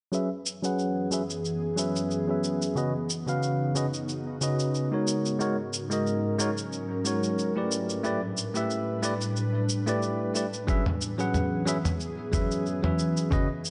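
Warm and relaxed, this sunset chillout excerpt moves at 91 BPM in F# dorian with a light 16th-note swing, drifting through suspended ninth chords from F#9sus4 to A9sus4 and back. A bright, bell-like tine electric piano sits up front from the start, sweeping through a low-pass filter and trailing digital delay, while an ethereal, detuned pad with ensemble chorus and slow, sustained chords enters at 0.8 seconds. Gritty, compressed electronic cabasa and toms carry the groove, joined at 10.7 seconds by a thumpy, tape-warm kick, all set in a lush hall reverb.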